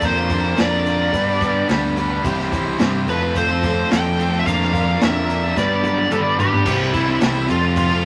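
Vinyl crackle and a moderate studio reverb frame this nostalgic folk rock and heartland rock fragment at 108 BPM in G mixolydian, where a bluesy, distorted lead guitar carries the melody up front over a double-tracked, crunchy overdriven guitar riff, a picked steel-string acoustic guitar in the background, a fingered electric bass, a vintage drum kit with dark cymbals and a punchy kick that plays a fill from 5.6 to 6.7 s, a grainy, very quiet tube shaker, and a soft, flute-like tonewheel organ with slow rotary speaker that holds chords until 6.7 s.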